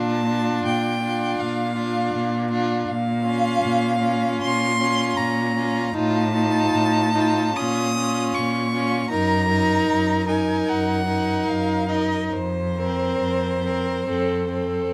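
A clear, up-front first violin sings an elegiac, solemn melody in a slow romantic string-quartet movement, bowed with smooth, even vibrato and flexible rubato over a close second violin line, a viola accompaniment and a focused, up-front cello bass, all in light reverb, with the harmony shifting from Bb to Bb minor and settling on Fsus4 at 12.3 seconds in this fragment of a longer piece.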